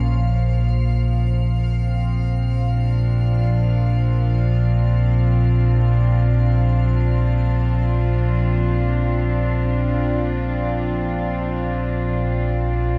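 Desolate and unsettling, this dark ambient drone in free time, cut from a longer piece, rests on an ominous, rumbling low drone up front, with a nasal, reedy chamber cello section holding sustained chords under a shimmer reverb and a faint, crystalline glass pad adding icy texture with chorus and shimmer as it gradually fades out, all set in a vast, echoing cathedral-like space with a cassette tape character.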